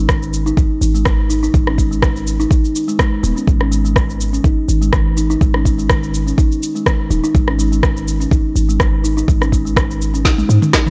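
This afro house cut sits in G# minor at 124 BPM in 4/4, with a light 16th-note swing that gives it an earthy, spiritual mood. A kalimba carries the arpeggios from the start, its plucked, hollow, ringing tone placed up front and softened by a low-pass filter, digital delay and sidechain pumping. Beneath it, a warm 808-style bass adds a boomy, sine-based low end with a fast attack and a noise layer, pumping in the same sidechained way. An electronic kick drum gives a deep, produced pulse, while an afro-pop drum kit adds rim clicks, shaker, toms and a woody snare. The mix stays dry, and a drum fill runs from 10.2 to 10.9 seconds at the end of this short section of a longer piece.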